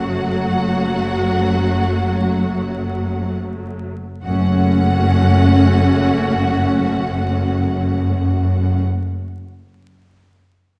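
Melancholic and yearning, this slow romantic movement for string orchestra unfolds in free time in F# minor, easing as it slows down over its first 4.2 seconds before moving into a second section. A close, warm violin section sings the melody with vibrato and portamento over a focused, distant second violin line, while a clear, up-front viola section carries the accompaniment and rich cellos and smooth, even double basses anchor the bass, sitting louder than the violins. The strings are heard from further back on a reverberant scoring stage, with vinyl crackle, in this short excerpt cut from a longer piece.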